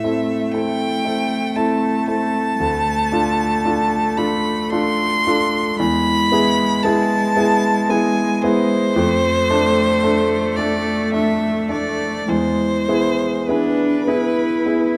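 A focused, vibrato-rich solo violin carries the melody up front in this elegiac, solemn excerpt from a slow romantic movement for piano trio at 56 BPM in 3/4 with free rubato, while a smooth, distant bowed cello sings a second line beneath it and a warm, polished grand piano supplies present accompaniment, all captured by close, detailed microphones in a moderate concert hall reverb with a faint mains hum.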